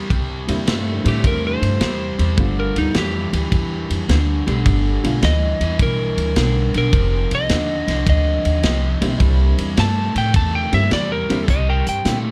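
Lightly reverberant and gritty, this swung electric blues shuffle excerpt has a soulful mood over chords moving from C7 to G7, F5 and back to C7. A thumpy, woody upright bass sits up front with a crunchy breakbeat kit of tight kick and dark cymbals, while an overdriven electric guitar plays a compressed, picked riff underneath. An electric slide guitar, slightly broken-up and played with fingerpicks, takes the solo from 1.1 seconds, and a detuned, jangly honky-tonk upright piano accompanies in two stretches, dropping out at 5.2 seconds and returning at 9.0.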